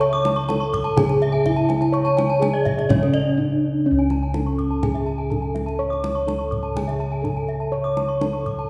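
A straight 4/4 pulse at 124 BPM drives this hypnotic, brilliant Balinese gamelan excerpt in C# pelog: a mellow bronze metallophone carries the melody with padded mallets, while two more metallophones struck with horn mallets play shimmering arpeggios, one bright and dry, the other boxy. Beneath them, round, beating bossed gongs sit up front in the bass beside a tight kendang played with hard hands, and the ensemble is heard from further back in a wet concert hall.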